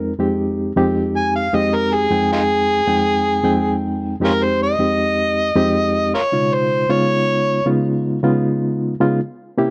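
A dry, close 1970s-style studio sound with small-room reverb frames this brooding, smoky F minor blues at 78 BPM, where a barky, reedy electric piano with overdrive and fast tremolo accompanies over Fm7, Db7 and C7b9 while an amplified, gritty harmonica with light vibrato and punchy tongue slaps takes the solo melody up front from 1.2 to 7.7 seconds.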